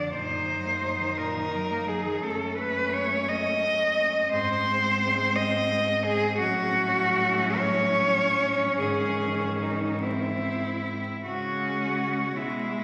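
A single cello carries the melody up front, its rich voice shaped by vibrato, a soft attack and expressive portamento as it sings between D#4 and D#5. This solemn, melancholic classical excerpt for cello ensemble sits in C# minor, moving in a rubato 6/8 at roughly 47-58 BPM counted in dotted quarters. Beneath it, a more distant cello with a clear, even tone traces a second line. A focused cello in the background supplies the accompaniment, and a fourth player holds the bass with a smooth, steady sound; every player bows with vibrato across the full 12.8 seconds. The harmony passes through Ebm/Gb, D#m7b5/F#, G#, F#m/A and G#sus4 before arriving on C#m at 11.2 s as a new section begins. A generous scoring stage reverb surrounds the ensemble, and a layer of vinyl crackle adds an aged surface.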